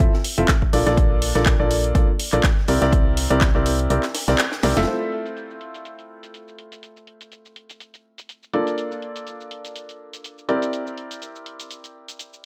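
Euphoric and joyful, this piano house excerpt swings at 123 BPM in F major, led by a woody, slightly detuned upright piano riff with sidechain pumping and tape echo over Fmaj7, Bbmaj7 and C9 chords, joined at first by a round, mellow FM bass with its own pumping and a very quiet, dry cocktail kit with a high-tuned snare, both stopping at 4.9 seconds, while a punchy, up-front analog kick drops away at 3.5 seconds and a layered house kit of handclaps, shaker, hi-hats, snare and crash, with low-pass filtering on its snare, hats, cymbals and percussion, carries through a band accent and drum fill into the longer second section, heard in a gritty hardware recording with light reverb and small room ambience.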